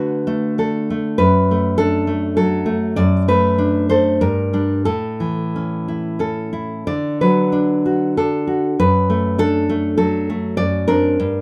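A rough home-demo recording in a wet studio ambience carries this nostalgic, sunny excerpt of a romantic piece for solo classical guitar in D major and 3/4, moving with rubato at around 87-103 BPM, where the up-front nylon-string guitar sounds full-bodied and deep, fingerpicked with audible finger squeak as it passes through D, D/F#, Gm and A before arriving at D7/F# near 10.6 seconds.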